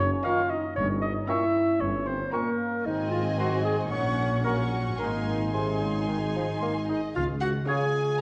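In a straight 4/4, this mischievous, quirky film cue sets an up-front clarinet against a bell-like celesta melody and a woody violin section line, while an oboe, a second, intimate violin section and, briefly at 7.7 seconds, a hollow flute section add second lines; a mellow bassoon and a smooth viola section fill the accompaniment, a very quiet harp rings out arpeggios over dark, distant French horn chords, and tuba, cello and double bass sections carry the bass, the cue sitting in a wet scoring-stage reverb and a worn, warbling cassette-tape pitch drift.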